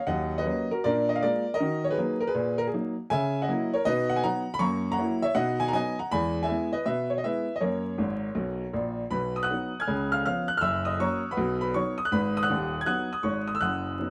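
A clear, boxy baby grand sits up front in a moderate studio room, its long sustain ringing through a layer of vinyl crackle. This exuberant, playful stride jazz is a short cut from a longer performance, swinging at 160 BPM in 4/4 as the solo piano ranges from the low bass to the high treble and settles into B major at 3.1 s. A fill at 8.0 s leads into a new section at 9.1 s, where the harmony moves through B, C#7 and F#7 before touching G#m7.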